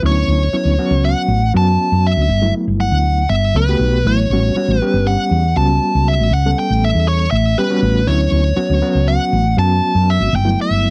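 Electric jazz fusion in D major at 119 BPM, slick and soaring, where a biting, brightly picked overdriven lead guitar with slapback echo sings high over a gritty, reedy electric piano pulsing with fast tremolo through a combo amp and a dark, growly, round fretless bass sitting up front, moving through lush Dmaj13, Gmaj13 and A13 chords in a dry, close 1970s-style studio sound.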